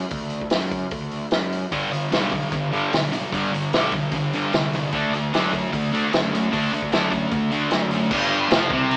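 A bright, double-tracked fuzz guitar riff enters up front at 1.7 s over an overdriven, picked electric bass and a mid-forward vintage drum kit with a punchy kick and dark cymbals, driving this swaggering, rowdy garage rock excerpt at 150 BPM through D and G chords with a live, small-speaker room sound and light reverb.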